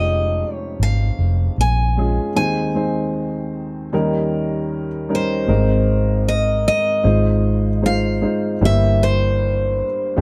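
A round, foam-muted electric bass sits up front and carries the most weight in this tender, heartfelt acoustic folk-pop ballad, its dark, amped tone anchoring the low end between F1 and Bb1. Above it, a picked steel-string acoustic guitar with an auditorium-sized body sings the melody from C5 to Ab5. An upright piano fills in the accompaniment across a broad span from F1 to C5, its woody, boxy voice carrying long sustain and audible action noise that give it an intimate, close-up feel. The piece moves at an unhurried 77 BPM in a straight 4/4 in Ab major, opening on Dbmaj7/F and drifting through Ab/Eb and Eb7 before a new phrase arrives at 5.5 seconds on Abadd9, then moves through Fm7/Ab to C7/G. All three parts play throughout this brief, roughly ten-second excerpt from a longer piece, framed by light reverb and a dark, warm production.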